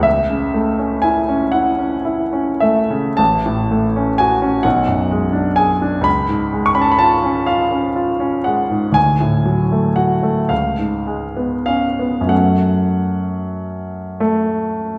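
In a rubato 6/8 lilt of 30-44 BPM, this tender, serene romantic nocturne for solo grand piano, cut from a longer piece, settles into F# minor from 3.2 s, its clear, intimate tone spanning A1 to C#6 with audible action noise, while a wet recital hall reverb places the listener further back in the room as the harmony moves through G#m7b5/B, C#, D and C#7 before resolving to F#m at 12.3 s.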